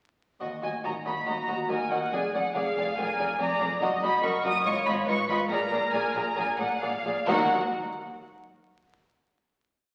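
A quick, stormy classical-period movement for string orchestra in Eb minor at 140 BPM, its 4/4 pulse carrying an uneven, urgent lilt under a heavy coat of scoring-stage reverb and the crackle of a very old 78 rpm record. Rich, up-front violins carry the smooth vibrato melody high above a second violin line of focused repeated notes and sustained chords, while lush violas enter at 1.3 seconds with a counter-melody. In the background, expressive cellos with portamento repeat bass notes, doubled by smooth double basses, before the whole piece settles onto a final Eb minor chord at 7.3 seconds.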